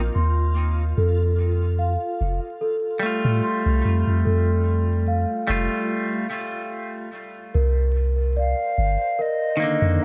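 A straight 4/4 pulse at 73 BPM carries this cinematic, melancholic trip hop piece in C dorian: a round, dark 808-style bass sits up front under bell-like, delicate celesta arpeggios with tape echo, while a reversed, granular swelling texture with built-in reverb shimmers in the background. A twangy, clean electric guitar with harmonic tremolo and tape echo enters at 3.0 seconds, and after a break at 5.9 seconds an airy, hollow wooden flute melody with vibrato arrives at 8.4 seconds, all within an echo-heavy mix dusted with vinyl crackle.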